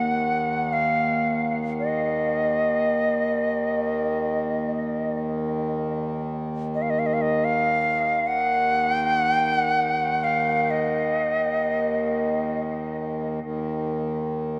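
A pure, woody cedar flute with vibrato and tongued notes leads this spacious, meditative world piece in free time. It sits up front over a reedy, nasal harmonium drone that breathes low beneath it, while a very quiet bronze singing bowl, struck with a wooden striker, rings bright and metallic with slow beating until 5.0 s. The flute melody stops at 12.6 s, leaving the vintage, band-limited harmonium to sustain alone until the cut at 14.6 s, and a huge, wet reverb with an 8.2-second decay lends the excerpt its vast sense of space.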